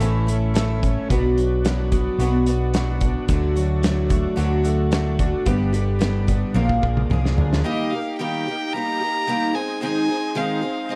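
A bright, picked twelve-string acoustic guitar rings out from the start with a shimmering, octave-doubled jangle, alongside a twangy electric guitar riff through a small, slightly broken-up old amp, a round hollow-body bass up front, and a loose indie drum kit with a fat snare and punchy kick in a pumping studio room. This is hopeful folk rock with a heartland rock lean, moving at 110 BPM in a straight 4/4, and it is cut from a longer piece. In the background a reedy tonewheel organ holds sustained chords through a slow rotary speaker with chorus vibrato and a touch of key click. The opening section in D major moves through A, Bm, D and G before a Bb7 and a drum fill at 6.6 s push the music up into Eb major. At 7.6 s the electric guitar, bass and drums stop, and a clear, intense fiddle with light vibrato takes the melody over the twelve-string and organ as the chords move from Eb to Ab. 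The sound is dry and close, with little reverb.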